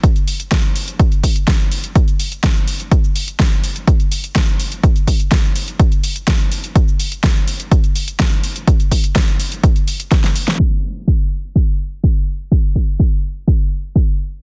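House excerpt at 125 BPM with an emotional, bittersweet mood, where a punchy, overdriven electronic kick sits up front from the start and a layered deep house kit of filtered hi-hat, shaker and fat, gritty snare runs beside it until a drum fill and band accent lead into a filter sweep at 10.6 seconds, leaving the kick playing alone until 14.1 seconds in a dry, dense, heavily limited mix.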